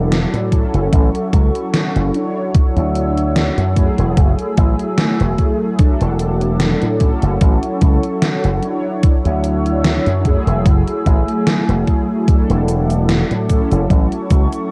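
A lightly swung groove from a thumpy, overdriven electronic kick and a gated 80s drum machine ticking cabasa and hi-hat under a gated-reverb snare drives this woozy, nostalgic vaporwave fragment, where a punchy slap bass with an envelope filter sits up front beside a round, detuned, chorused synth brass while a warbling, lo-fi tape-like pad holds slow-blooming chords beneath, all cycling through E9sus4, A6, Dmaj9 and F#m9 in a dark, cassette-tinged production.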